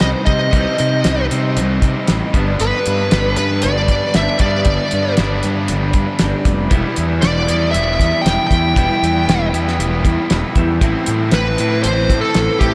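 A dreamy mix soaked in a huge, ambient reverb with a long 8.1-second tail frames this carefree, upbeat indie rock excerpt, which moves at 117 BPM in a straight 4/4 in G major. Up front, a smooth overdriven lead guitar carries the melody in a bright, picked tone with delay. Beneath it a biting overdriven guitar plays a riff, while a second overdriven electric guitar, treated with ensemble chorus and delay, sits in the background on a similar riff. The fuzz fingered electric bass is round and punchy, overdriven and placed up front. A cloth-damped, thuddy drum kit with a fat snare, tight kick, hi-hat and a gritty, rolled-off top drives the whole 12.7 seconds as the chords move from Cm to G, Em and Am.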